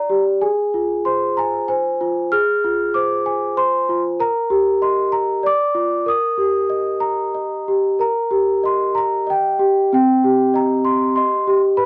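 A dry, close recording with a 1970s studio character and a small room's ambience frames this short cut from a longer children's lullaby, gentle and tender in Eb major and 3/4 at 96 BPM, played with a rubato feel and tuned to A4 = 438 Hz. A large celesta plays alone throughout the 11.9 seconds, up front and bell-like, its sweet, ringing, band-limited tone spanning C4 to F6. The harmony moves from Fm at 0.4 seconds through Eb and Dm before settling on Cm at 9.9 seconds as the opening phrase is heard again.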